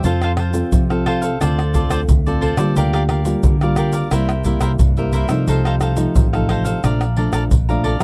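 A straight 4/4 pulse drives this joyful, lively samba and choro fragment, cut from a longer piece and carried by a percussion section of tube shaker, deep surdo, pandeiro and tamborim, struck with hard hands and sitting close, dry and up front. Beneath it, a vintage muted electric bass played with the fingers gives a dark, round, punchy low end, its foam-muted tone amped and electric. A nylon-string guitar, thumb-plucked in a classical manner, fills the middle with warm acoustic chords, and finger squeaks are audible on the strings. Above it, a picked cavaquinho adds crisp, warm accompaniment in its higher range. All four parts play together from start to finish of the 8-second passage, moving through a progression that opens on F, passes through Dm7, Gm7/D, C7 and F7/C, and lands on Bbmaj7. The sound is that of a dry, close studio recording in a 1970s style, with little reverb.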